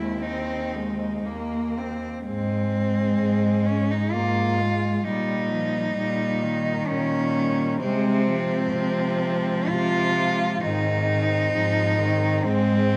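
Serene and lyrical, this classical excerpt for cello ensemble unfolds in an unhurried, rubato 3/4, with four bowed cellos playing throughout its 13 seconds under a moderate scoring-stage reverb. A close, up-front cello carries the melody with a rich, vibrato-laden tone, while a focused second line sits in the background, a distant accompanying cello adds smooth, even support, and a clear bass cello grounds the harmony from up front. The chords drift gently from Ab/Eb through Eb7/Bb and Ab/C before settling on Ab.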